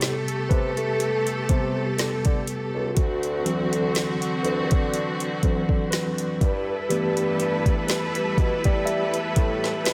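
A dry, close-sounding cut from a longer contemporary R&B piece, sensual and moody at a slow 61 BPM with a light sixteenth-note swing, where a mellow tine electric piano takes the lead through Am7, D7 and G69 over lush bowed studio strings holding sustained chords, a classical-style bassoon with vibrato carrying the bass line, and an up-front electronic drum kit with a soft kick, woody snare and metallic hi-hats.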